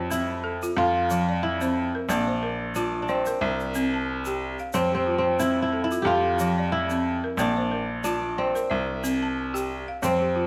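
Hypnotic and flowing, this West African string and xylophone piece in F major moves at 91 BPM in a gently swung 4/4, with a crisp, ringing, fingerpicked kora carrying the melody up front over woody, buzzing balafon arpeggios struck with rubber mallets, a brilliant, intimate baby grand piano holding the bass with audible action noise, and a grainy tube shaker adding percussion, as the harmony cycles through F, Bb and C inside a wet recital hall reverb.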